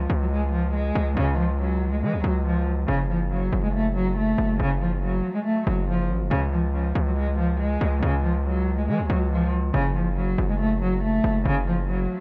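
The mix is echo-heavy, with a light studio reverb and a cold, tense air across this short cut from a longer drill track. It moves at 140 BPM in 4/4 with a half-time feel, set in F# harmonic minor. A single bowed cello carries the melody in its low register, sounding dark and woody with a vibrato, its tone shaded by a low-pass filter and trailed by tape echo. Beneath it, a heavy 808-style bass with a saturated, distorted edge and a noise layer strikes with a fast attack and decays, sitting up front alongside the cello. Both parts play from the start to the close at about 12 seconds, while the harmony alternates between C# and F#m, returning to C# at 6.3 seconds.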